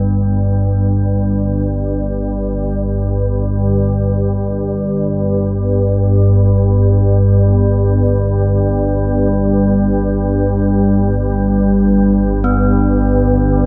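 An up-front, organ-like drone anchors this dark ambient fragment in free time, its nasal, sine-tinged tone sustained low beneath a single G major chord and thickened by ensemble chorus and reverb. Above it, a deep, moody pad holds sustained chords with detuned sawtooth richness, a sub octave and a slow attack, adding a shadowy, chorused haze. A gamelan-type bronze metallophone sits in the background with ringing arpeggios struck with a wooden mallet, falling silent at 3.2 seconds and returning at 12.4 seconds. Throughout, a very quiet bronze singing bowl hums on a single bright, airy note with slow beating. The dark, warm production, tuned to A4 = 444 Hz, is bathed in a cavernous cathedral reverb, leaving a desolate, meditative stillness over these 13.7 seconds cut from a longer piece.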